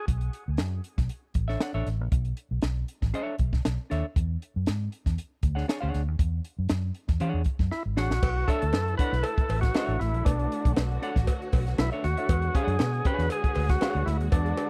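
Driving and cool, this funk excerpt sets a punchy, dry cocktail drum kit and a round, foam-muted bass up front under clean hollow-body guitar accompaniment over Bm11 and E13, until a drum fill at 7.7 seconds brings in a gritty, overdriven tonewheel organ melody with key click and tape echo, joined at 8.2 seconds by distant bowed strings with portamento and a background cowbell, all in an intimate 1970s-style small-room sound.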